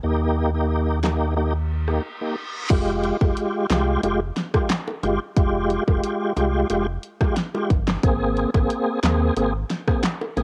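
Hypnotic and bouncy, this dancehall fragment in F minor moves at 90 BPM in a straight 4/4, cut from a longer piece and captured as a home recording on cassette with light reverb. A full, lightly overdriven tonewheel organ sits up front from the start, its chorus vibrato and fast rotary speaker giving a shimmering churn while sidechain pumping makes it breathe against the beat. Beneath it, a deep sub bass with an added octave, sine- and triangle-toned with a fast attack and sustained notes, anchors the low end over an Eb chord. The pop drum kit arrives at 1.0 seconds, an electronic, layered sound with a punchy kick, a fat snare, handclaps, hi-hat, rim clicks and a crash, re-recorded in a small room and run through cassette tape for an up-front presence. An electronic reverse cymbal rises into a short break, and at 2.7 seconds the groove settles onto Fmadd9, where very quiet, tight, high-tuned bongos played with hard hands add a faint acoustic patter before the harmony shifts to Abadd9 at 8.0 seconds.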